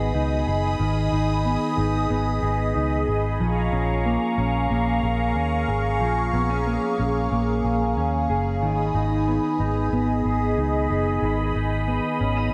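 A swirling, detuned analog pad with phaser and chorus holds sustained chords from the first moment while a mellow, clean electric guitar with subtle chorus and delay plays arpeggios and a round, punchy foam-muted fingered bass sits beneath, the mix soaked in a lush hall reverb as this melancholic, haunting dream pop passage moves from G#m to A#m7 and back to G#m at 8.6 seconds.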